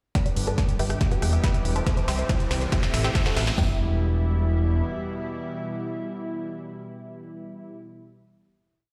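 A lush, airy sawtooth pad opens this emotional, driving uplifting trance piece in E minor at 140 BPM, joined by a detuned unison pluck playing a repeating sixteenth-note riff over a pedal note with dub echo, a fat, saturated off-beat bass, and two punchy, tape-warm analog drum machines, one carrying a four-on-the-floor kick, toms and open hats and the other high-pass-filtered hats, rim and snare, as a drum fill, a filter sweep on the pluck and a background riser build until the drums drop out by 3.7 s and the pumping pad and pluck settle onto a final E minor chord from 3.6 s, set in a large, bare-room studio reverb.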